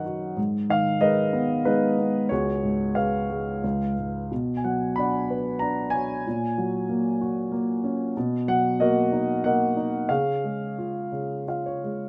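A dark, mellow baby grand piano sits up front with long sustain, playing a lyrical classical solo in 3/4 at about 93 BPM with uneven beats and a rubato feel. The mood is warm and sunny as the harmony moves from G#madd9 through C#7sus4, C#7, Bmadd9, F#/A# and Bmaj7 to C#, with a short fill at 11.1 seconds closing this 12.1-second cut from a longer piece. Close, detailed microphones and light reverb frame the instrument.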